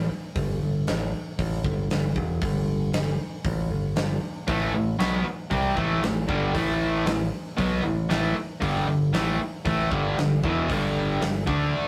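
Hard rock with a heavy, driving mood in a straight 4/4, cut from a longer piece: a bright, punchy picked electric bass sits up front from the start, joined at 0.4 seconds by a huge arena drum kit whose punchy kick, medium-tuned snare and hi-hat fill a big room. At 4.5 seconds an overdriven, double-tracked electric guitar riff comes in up front as the harmony moves from Emadd11 through Am to G5. The sound is a rough rehearsal-room recording with tube saturation and moderate studio reverb.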